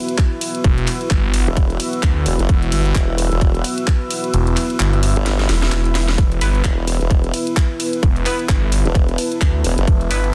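A dense, heavily limited modern master with light reverb carries this aggressive, swaggering bass house excerpt in E minor at 130 BPM, swung on the sixteenths, where a thick, swirling phased saw bass and a formant-filtered wobble bass, both up front, pump against a tight, layered electronic kick. A garage kit adds cracking snare, handclaps, ride and warm hats, while a dark, moody analog pad holds sustained chords and a deep ambient pad sits dark in the background, both chorused and breathing with the sidechain. The kick drops out from 4.3 to 6.2 seconds under a drum fill and a faint electronic swell, then a nasal, band-passed chord stab with tape echo enters at 6.4 seconds.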